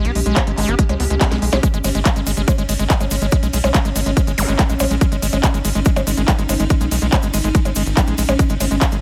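A squelchy, resonant acid line screams through distortion, chorus and tape echo over a sidechain-pumped, detuned wavetable pad and a punchy sawtooth sequencer bass in this alien psychedelic trance excerpt at 142 BPM in G# harmonic minor. It is driven by an up-front overdriven kick that enters at 0.4 s and a layered techno kit of cracking snare, smooth hats, handclaps, ride and percussion blips that plays a drum fill at 1.2 s. Very quiet electronic swell and zap effects appear from 1.0 s, and a grainy, close cabasa joins in the background from 1.6 s.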